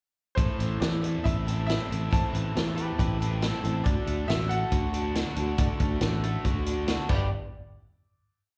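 A bright, brilliant grand piano carries the melody in this short folk rock and heartland rock piece, singing motif-based song phrases with long sustain and a slapback echo. At 139 BPM in a straight 4/4, the nostalgic, jangly pre-chorus moves from Am to D and then G. It is driven by a biting, overdriven, double-tracked guitar playing picked arpeggios with its own slapback, and by an old ladder-braced acoustic guitar strumming woody, boxy open chords in the background. A direct, up-front electric bass plays a dotted figure beneath a vintage kit whose punchy kick, high-tuned snare and dark cymbals settle into a ballad groove, while a very quiet upright piano adds close-voiced pushed chords. A twangy, fingerpicked pedal steel slides in at 2.8 s with volume swells and answering blues licks, returning briefly before the final hit at 7.3 s. The sound is that of a live gig heard through a club PA, with club reverb and a dulled top end.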